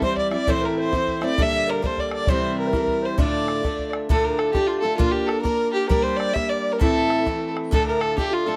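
Celtic folk polka in D minor at 132 BPM with a swung 2/4 lilt, spirited, dark and lively, where an up-front fiddle carries the smooth, lightly vibratoed melody over a pure wooden baroque flute line set in the background, a bright picked steel-string acoustic guitar picking through chords like Am, Gm/Bb and Dm, and a boomy, close, dry bodhran driving the beat until 8.3 seconds, all within a moderate studio reverb in this cut from a longer piece.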